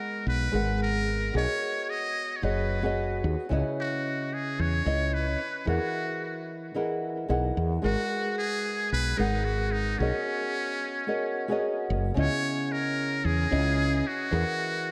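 A muted trumpet and a fingerpicked nylon-string guitar open this relaxed, smooth sunset chillout excerpt together, both touched with delay. The trumpet carries a breathy, buzzy jazz-style solo with light vibrato, while the small, dark guitar, complete with finger squeak, moves through lush chords such as G#m9, Bmaj13, C#m9 and Emaj9#11. A round, woody fretless electric bass joins at 0.3 seconds and sits up front, and a moderate plate reverb gives the whole mix a dreamy, floating glow.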